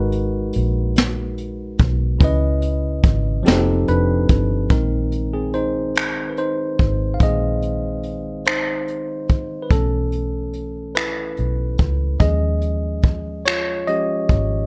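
Slow R&B in a straight 6/8 at 48 BPM, this late-night, sultry excerpt pairs a clean tine electric piano heard through its built-in speakers with a dark, round, foam-muted fingered electric bass and an acoustic jazz kit played with brushes, its boomy kick, medium-tuned snare, hi-hat and finger snaps sitting up front in a dry studio room. Lush ninth chords carry the opening, moving from G#m9 through C#m9 to F9. At 4.7 seconds the electric piano takes a solo over suspended chords that move from A#9sus4 to B9sus4 and D#9sus4 until the cut at 14.7 seconds.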